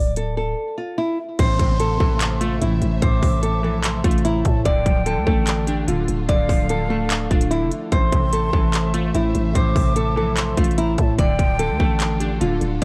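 A small, fingerpicked nylon-string guitar melody with tape echo opens over a growling, buzzy 808-style bass, and an up-front trap kit of hard-clipped kick, crisp hi-hats and handclaps joins at 0.2 s; at 1.4 s an airy, hollow concert flute with tape echo, glassy, warbling digital keys with chorus, lush bowed strings in the background and a brief downlifter fill out this dark, melancholic half-time trap excerpt in A minor at 147 BPM, which moves between A minor and D minor inside a shadowy studio reverb.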